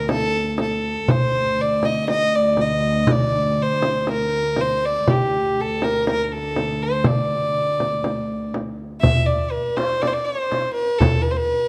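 A rich, reedy violin sings a longing, melancholic melody up front over a low cello-section drone, gut-strung and lightly vibrato, while a small, bright frame drum keeps a soft-handed pulse at 121 BPM in a straight 4/4. At 9.0 s a deep clay darbuka, struck with hard hands and heard from a distance, joins the frame drum for the brief closing passage, and the cellos fall away a moment later. This short cut from a longer Arabic maqam ensemble piece sits in a dark production, bathed in the lingering reverb of a recital hall.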